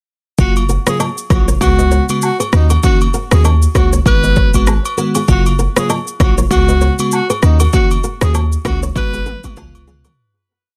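A sunny, romantic afrobeats piece in F# major at 98 BPM with a swung sixteenth feel opens at 0.4 seconds with a breathy, whispered alto saxophone hook dressed in plate reverb and tape echo, riding over sparkling chorused FM electric piano chords, a punchy, heavy 808-style bass line, and an overdriven deep house kit of punchy kick, syncopated rim clicks, shaker and toms, joined by agogo bells and woodblock and a fingerpicked flamenco guitar figure doubled in thirds, before a drum fill closes out the fade-out at 10.2 seconds.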